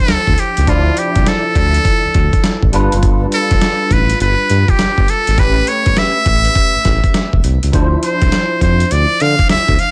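A buzzy, breathy trumpet with a metal mute leads up front in a jazz-style solo line across this punchy, bouncy new jack swing excerpt in D dorian at 102 BPM, swung on the sixteenths. Beneath it, a bell-like tine electric piano with ensemble chorus plays softly through Dm9, G7 and A9, while a smooth sawtooth-and-triangle synth bass holds mellow, sustained notes with vibrato. A gritty, overdriven sampler-style drum kit with a thumpy kick and a compressed, room-recorded snare and hi-hat sits forward in a dry, close mix.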